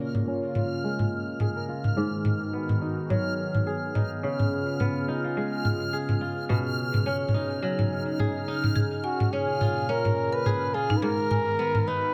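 A moderate studio reverb gives this short folktronica passage, cut from a longer piece, a close, roomy glow, and its mood is wistful and autumnal at 106 BPM in 4/4 with a gentle swing on the sixteenths. Up front from the start, a bright, ringing kora plays fingerpicked arpeggios, roughened by vintage 12-bit sampler grit and delay and shaped by a low-pass filter sweep that runs the whole length. Beneath it, a detuned analog pad in sawtooth and triangle tones holds smooth, warbling sustained chords with chorus, while a reversed, granular swelling texture floats high above with dreamy, long-releasing tails, and tape-warm electronic toms carry the drum part. At 8.8 seconds a woody, dry marimba struck with hard mallets slips in behind as a second line with delay, and at 9.0 seconds a breathy, whispered flugelhorn takes the melody with jazz-style vibrato, intimate and mellow in the foreground. 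The harmony moves through A#m7, G#m7, C#7 and B69 before circling back to A#m7 and G#m7.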